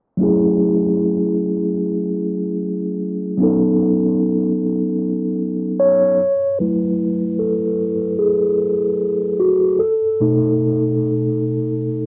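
A swung 16th-note hip hop groove at 75 BPM in 4/4 sets a reflective, hazy mood in F# minor for this short cut from a longer piece. A mellow, clean tine electric piano sits up front, sounding through built-in speakers with cassette tape coloring and a low-pass filter, and moves through F#m9 and B9 before a brief pause, then returns on F#m9 to B7. From 6.6 seconds the piano takes a solo as its filter keeps sweeping, and a small room's moderate reverb adds to the home-recorded cassette haze.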